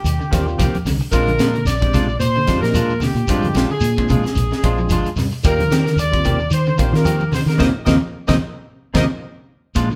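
Hypnotic and driving, this short afrobeat excerpt grooves at 111 BPM in 4/4 with a light sixteenth-note swing, moving through Eb6 and Bb7 harmony. A tight funk drum kit with a high-tuned snare and tight kick anchors the beat alongside a punchy, foam-muted fingered electric bass that lays down the low end. A warm horn section carries the melody with light vibrato and tight pop-style phrasing, while a dark, clean electric guitar adds picked stabs and a hollow-bodied semi-hollow guitar plays arpeggios further back. Behind them, thick-skinned congas, a grainy shekere and a bright, barky tine electric piano treated with phaser fill out the texture. From 7.6 seconds a drum fill and a band accent push toward the end of the section, all captured as a band playing live in one room with moderate studio reverb.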